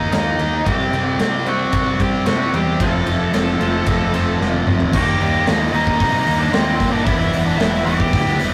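Bittersweet and restless, this 112 BPM quiet-loud alternative rock fragment pairs a dark octave-fuzz lead guitar melody with an up-front, bright high-gain guitar riff, a round fuzz fingered bass, a punchy big-room drum kit with bright cymbals, a very quiet hollow-body guitar riff entering at 0.7 s, and a twangy, slightly broken-up tremolo guitar arpeggiating in the background until a drum fill at 4.4 s leads into a new section at 4.9 s, all caught in a rough rehearsal-room recording with a wet booth ambience and warm saturation.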